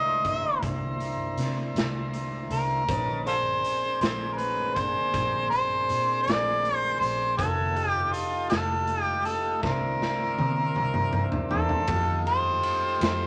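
Set in a moderate club reverb, this soulful, rollicking slow blues excerpt moves at 53 BPM in 12/8 over C9, Bb9 and F9 chords. An up-front, overdriven harmonica leads with a jazz-style solo full of light vibrato, tongue slaps and scooped notes, while a smooth tonewheel organ holds sustained chords through a slow rotary speaker. A dark, round, foam-muted electric bass plays the bass line alongside a gritty, saturated garage drum kit with a punchy kick and rolled-off top, and the drums play a fill from 9.6 to 11.9 seconds.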